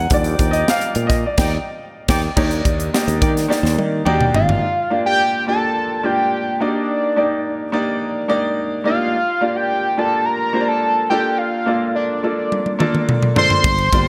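A fat, detuned analog synth lead carries the bittersweet, urban melody from 4.4 s in this polished 1980s jazz-funk pop excerpt at 106 BPM, floating over a lightly chorused baby grand piano that runs throughout, after an opening in which a growly fretless bass, a punchy, distant horn section and a crisp fusion drum kit with a high-tuned snare push through a band accent and a fill before the drums fall away and return with another fill at 12.5 s, the bright digital mix bathed in moderate plate reverb.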